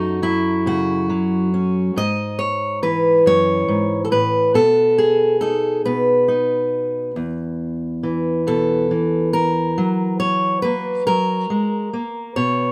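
Pastoral and warm, this short folk excerpt features a lone fingerpicked steel-string acoustic guitar, played up front at a slow 46 BPM in a straight 6/8 in E major, tuned to A4 = 439 Hz. Spanning E2 to D#5, the guitar moves through F#m, Eadd9/G#, B, E5 and F#7 across its 12.7 seconds. A moderate studio ambience surrounds it, and the passage is cut from a longer piece.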